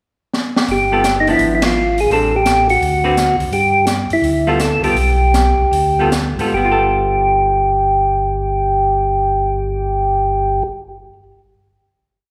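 Bluesy and soulful, this complete soul jazz organ trio piece swings in 4/4 at 144-170 BPM in G mixolydian, opening with a drum fill at 0.3 s before an up-front tonewheel organ melody of call-like motifs, its third-harmonic percussion and slow rotary speaker giving a round, dark tone. Beneath it, a second organ voice plays a mellow two-feel bass with vibrato and key click through its own slow rotary speaker, while a clean, hollow-body archtop guitar picks syncopated three- and four-note chord shapes, and sticks on a high-tuned snare keep a backbeat with time on the hi-hat. A band accent punctuates the opening bars, the tempo slows from 3.5 s, and the drums stop at 6.5 s as the group holds a final chord in a reverberant recital hall.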